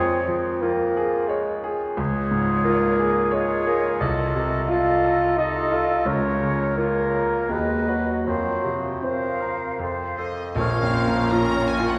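Set in a wet concert hall with a long, enveloping reverb, this brief extract from a longer romantic movement for piano and orchestra moves in a rubato triple metre with a passionate, brooding mood. A clear, open concert grand sits up front carrying the melody from the start, its deep bass anchoring the line, while an airy, distant flute, a solo oboe and a soft-attacked clarinet in the background weave second lines around it. A mellow bassoon with light vibrato supplies accompaniment beneath the woodwinds throughout. The harmony drifts through chromatic turns before settling onto the home minor chord as the strings arrive: a rich, focused violin section takes up the melody at 10.2 seconds, and at 10.6 seconds a very quiet dark, woody violin line, a smooth, distant viola section, a barely audible expressive cello section with portamento and a background double bass section join in. A very quiet mellow French horn section holds sustained chords, and close, dry timpani struck with medium mallets sound softly until 11.6 seconds, lending a hushed weight to the closing bars.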